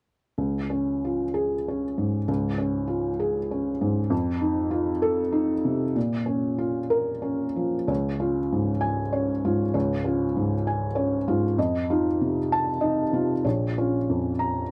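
Intimate and peaceful, this short fragment of a longer neoclassical minimalist piano piece drifts in a rubato 6/8. A felt-muted upright piano plays alone from 0.4 to 14.7 seconds, its mellow, hushed tone sitting up front with the soft clatter of its action clearly audible. The dry, close 1970s-style studio sound carries two phrases, the second beginning at 7.9 seconds and repeating the same gentle cycle of chords.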